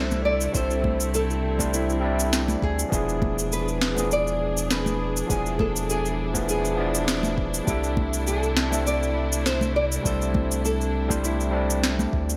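A round, deep analog bass sits up front beneath a fingerpicked nylon-string guitar melody with subtle chorus and delay, while a barky, overdriven tine electric piano, veiled muted strings, soft background congas, an overdriven electronic kick and a sharp, gated-reverb snare with shaker carry this sunny, smooth sunset chillout excerpt in C major at 101 BPM with a swung 16th feel, moving from C69 to E7b9 at 2.9 seconds and back at 7.7 seconds in a bright 1980s-style digital production.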